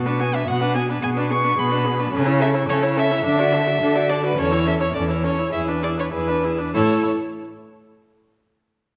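Rubato in 4/4, this lively, graceful quick classical-period string quartet fragment, cut from a longer piece, has a distant, expressive first violin singing the melody with vibrato and portamento from 0.2 s, a smooth, even second violin up front on the second line, a soft-attacked viola with portamento set back in the accompaniment, and a focused, rich cello with a smooth top carrying the bass up close, all bowed through a Bm to E7 progression that lands on A5 at 6.7 s in the wet bloom of a recital hall.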